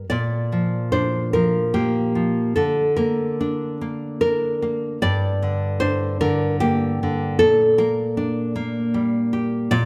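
Rubato in 3/4 with uneven, breathing beats carries this wistful, intimate romantic excerpt for solo nylon-string guitar, whose fingerpicked, full-bodied, deep classical tone sits up front across a range from G2 to D5, moving from Bb through Bb/D and Gm to Gm/Bb inside a moderate recital hall reverb over its 9.9 seconds.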